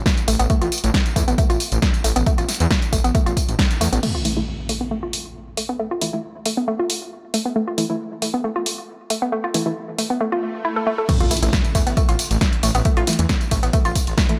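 Set in light digital reverb, this dark, relentless peak-time techno excerpt drives at 136 BPM in straight 4/4, with an overdriven, punchy electronic kick and an analog drum machine of snare, hi-hats, ride, crash and tambourine pumping up front, a woody, wave-folded pluck riff with chorus and delay, and a thick, menacing detuned saw bass; the kick falls away at 3.7 seconds and the bass at 4.0 seconds as an electronic impact lands, muted, deep dub chord stabs with lush chorus and dub echo arrive under a filter sweep, and a swell leads into the drop at 11.1 seconds, where the kick and bass return.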